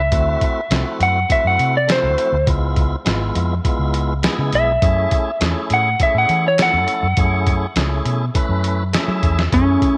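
A slightly broken-up electric slide guitar takes the lead from the first moment, soloing up front over a smoky, soulful straight-eighth soul blues groove, backed by a full tonewheel organ with key click, light overdrive and a fast rotary speaker, and a dark, foam-muted fingered electric bass that sounds round and punchy. A gritty, pitched-down boom bap sampler-style drum kit with a thumpy kick, a medium-tuned snare and hi-hat sits close in a small-room sound, while the chords move from D7 through C#7#9 to F#m7 under light reverb. Near the end the organ adds a fill at 8.6 seconds and the drums fill at 9.2 seconds, in this brief cut from a longer piece.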